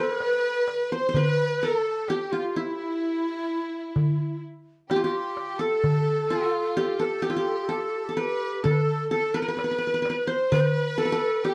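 Turkish makam ensemble music in 10/8 with a hypnotic, soulful mood, where a mellow, fingerpicked qanun carries the melody up front, a breathy, tongued low ney with vibrato and an unsteady tone and a smooth, distant bowed violin section trace second lines, and a crisp metal-shell darbuka played with soft hands joins close at 0.2 s, all set in a wet studio reverb with a dark production.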